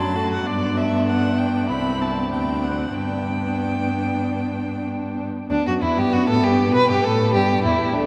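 This is a quick, classical-period movement for string quartet in G major, cheerful and lively at 96 BPM in 4/4, with uneven beats and a rubato feel that lets the pulse breathe. The first violin carries a smooth, even melody with vibrato, while the second violin plays a focused second line that sits up front in the mix. The viola fills in the accompaniment from a more distant position, expressive and colored by vibrato and portamento. The cello anchors the bass with a focused, forward tone and a smooth top. All four bowed instruments have a rich sound, and the quartet is tuned to A4 = 441 Hz and bathed in a wet cathedral reverb with a long 6.8-second decay. A G, Am/C, D7, G progression opens the passage, and a new section arrives at 5.5 s before this fragment of a longer piece breaks off at 8.1 s.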